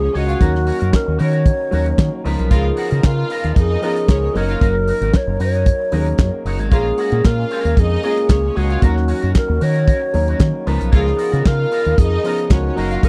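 Sultry and glamorous, this short disco excerpt moves at 114 BPM in a straight 4/4, cut from a longer piece and cycling through chords such as Ebm7, Db13, Gb6 and Bbm7. A wooden-headed alto flute carries the melody with a pure tone, gentle vibrato and soft attack, while a clear studio string section bowed with lush, focused vibrato supplies a second line. The groove rests on a round, dark fingered electric bass and a damped 70s drum kit, both placed up front, with a fat snare, tight kick, hi-hat and handclaps; the drums enter at 0.2 seconds. A twangy, clean electric guitar played through an envelope filter and soaked in lush chorus adds picked accompaniment, alongside a grand piano sitting naturally in the background. A mellow French horn section holds sustained chords from a distant, roomy position. The whole has a dry, close 1970s-style studio sound with a small room reverb.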